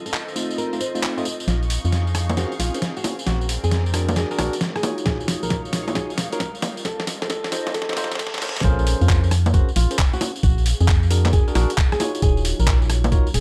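UK garage in a two-step mould, this bouncy, skippy cut from a longer piece moves at 134 BPM in Bb minor with a swung sixteenth feel, cycling through minor-ninth and dominant chords. A fingerpicked flamenco guitar carries the melody through a low-pass filter and tape echo, with audible finger squeak, while a bell-like tine electric piano adds bright, clean stabs that open under a filter sweep. A gritty, pitched-down sampler-style kit of snare, hi-hat, rim click, handclaps, tambourine and bongos sits up front, joined at 1.5 seconds by a hollow, organ-like FM bass with a fast, decaying attack. Behind them an ethereal, airy pad holds sustained chords very quietly, and a sul tasto string section with vibrato and sidechain pumping sits in the background until 8.6 seconds. A thumpy electronic kick arrives at 5.1 seconds, and a build-up with a drum fill, a filter sweep and a faint riser and reverse cymbal leads to the drop at 8.6 seconds, all in a dark, warm production with light reverb.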